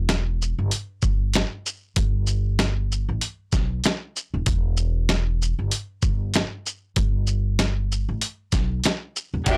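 Boom-bap hip-hop at 96 BPM in E minor, dark and gritty and cut from a longer piece with a swung sixteenth feel, pairs a woody, pizzicato upright bass with transformer saturation and a compressed, pitched-down sampler-style kit of thumpy kick, medium-tuned snare, hi-hat and shaker pushed into overdrive, both up front over harmony that alternates between E minor and chordless passages, until a clear, bowed studio string section with vibrato and high- and low-pass filtering enters at 9.5 seconds, all in a dry, blown-out mix.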